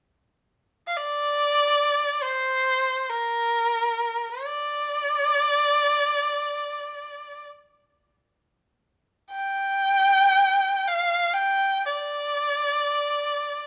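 A clear, nasal erhu plays solo in free time from 0.9 seconds, a wistful and graceful Chinese traditional line in D jue mode with vibrato and portamento, its focused bowed tone set up front yet faintly distant under light reverb and close, detailed microphones in this short fragment of a longer chamber piece.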